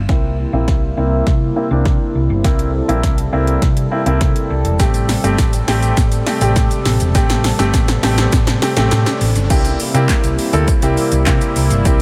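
Confident yet bittersweet, this dance-pop excerpt moves at 102 BPM in a straight 4/4, cut from a longer piece and carried by a deep house drum kit that sits up front with a deep kick, punchy snare, metallic hats, handclaps, shaker and crash, all given a gritty overdrive. A dark, round hollow-body electric bass plays fingered lines from E1 to C3, pumping through sidechain compression, while a clear, polished baby grand piano and a shimmering, retro pulse-width pad with chorus and a slow attack hold the harmony, both pumping and filtered. The chords move from C7 to Am7 at 4.8 seconds, when a grainy, mellow tube shaker also enters very quietly and close. A build-up runs to 9.5 seconds with a drum fill, a filter sweep and a faint electronic riser starting at 6.2 seconds. At 9.5 seconds the track drops back onto C7 in a new section, all set in a light reverb.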